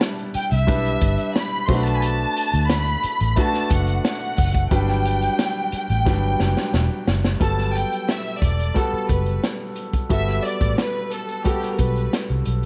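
A light studio reverb and a softened top end, with nothing above 10.4 kHz, give this lush 1970s-style soul excerpt a romantic glow at 89 BPM in a straight 4/4, in G major. An up-front vintage drum kit with a punchy kick, a medium-tuned snare and hi-hat sits alongside a dark, round, foam-muted fingered electric bass that is amped and also placed close. A concert grand piano provides intimate, natural accompaniment, its deep bass and audible action noise adding texture beneath the harmony that moves from Em7 through Bm7 and Gmaj7 to Gmaj9. The bowed violin section carries the melody with a smooth, even ensemble tone and vibrato, lush and forward in the mix. A drum fill at 6.1 s leads into a new section where the violin section takes a solo from 7.4 s, giving the passage a warm, romantic voice.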